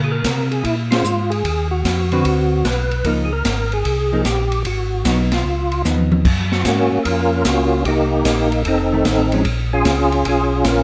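A swung 4/4 groove drives this bluesy soul jazz organ trio excerpt, with an up-front acoustic drum kit of boomy kick and dark cymbals entering at 0.2 s, punching out band accents and playing a fill that leads into a new section at 6.3 s. A fat, lightly overdriven tonewheel organ carries the melody with third-harmonic percussion, key click, chorus vibrato and slow rotary speaker, while a second, round and mellow tonewheel organ holds down the bass through its own slow rotary. A hollow-body electric jazz guitar adds clean, picked accompaniment until 6.3 s and returns briefly near 8.9 s, and the trio is captured with close, detailed microphones and light reverb.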